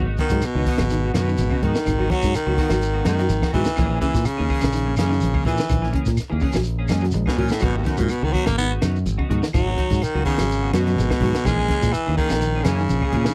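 A dry, close 1970s-style studio sound frames this hypnotic, funky afrobeat excerpt, where a raspy, gritty baritone saxophone solos up front over a bright fingered electric bass, a compact cocktail drum kit with a high-tuned snare and punchy kick, hard-handed congas, a grainy shekere, faint woody claves, and two background electric guitars: one slightly broken-up and twangy, playing arpeggios through lush chorus, and the other clean, playing stabs through analog chorus.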